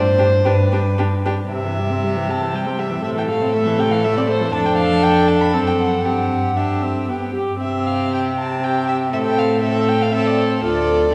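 In a flexible, rubato three-beat lilt, this lively, graceful excerpt from a quick classical-period string quartet movement sets a dark, nasal, distant first violin melody over a second violin line with light vibrato, a smooth-topped viola accompaniment and a rich, close cello bass up front, all four bowed in period style on reedy gut strings within a wet church reverb.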